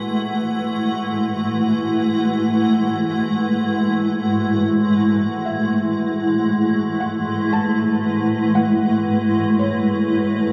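A slow, straight 3/4 pulse at 58 BPM underpins this serene, melancholic ambient passage in F# minor, cut from a longer piece, where an up-front granular cloud pad holds a sustained F#m11 chord throughout, its detuned, blurred body evolving gently inside its own built-in reverb. At 5.5 seconds a felt-muted upright piano fades in from the background with a soft, dark melody, its thick felt and audible action noise giving it an intimate quality, trailed by tape echo. A wet concert hall reverb and worn cassette tape with warbling pitch drift color the whole recording.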